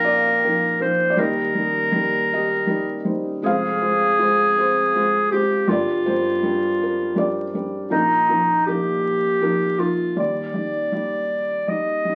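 An acoustic folk-pop ballad cut from a longer piece, heartfelt and intimate in a slow 6/8 at 53 BPM in Eb major, in which a felt-muted upright piano carries the melody up front with a soft, dark tone and audible action noise, a mellow, classical-style clarinet plays a second line before stepping forward for a solo at 10.2 seconds, and a very quiet, woody pizzicato upright bass on gut strings thumps beneath until 10.1 seconds, the recording set in wet studio reverb and the crackle of a very old 78 rpm record.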